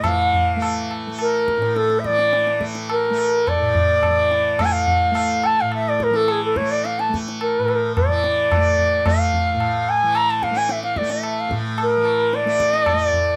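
Close, detailed microphones and a light reverb give this short Hindustani classical passage a clear, intimate sound. The mood is meditative and radiant, set in 4/4 with a straight feel at 108 BPM, and the tempo speeds up over the full 13.4 seconds. Up front, a bright, reedy bamboo bansuri carries the melody with an airy, straight, tongued tone, moving between G#4 and Bb5. Beneath it, a softly plucked tanpura holds a buzzing, shimmering drone from A2 to A3. A low-tuned tabla adds ringing percussion with a compressed, saturated edge. All three parts play together from the opening moment, and the passage is cut from a longer piece.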